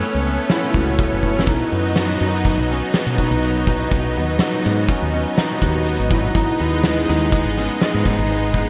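Tense and driving, this excerpt of progressive instrumental band music moves at 123 BPM in a straight 5/4, with a thick, detuned pad under chorus and a ringing, thumb-plucked concert harp playing arpeggios over the chords Aadd9/C# and then B at 1.5 seconds. An oversized, low-tuned drum kit sits up front with a punchy kick and fat snare treated with gated reverb, firing a fill at 1.2 seconds, while a round, hollow-body fretless bass anchors the low end and a grainy tube shaker joins in the background at 1.5 seconds. The bright 1980s-style digital production places it all in a lush hall reverb with a touch of small-room ambience.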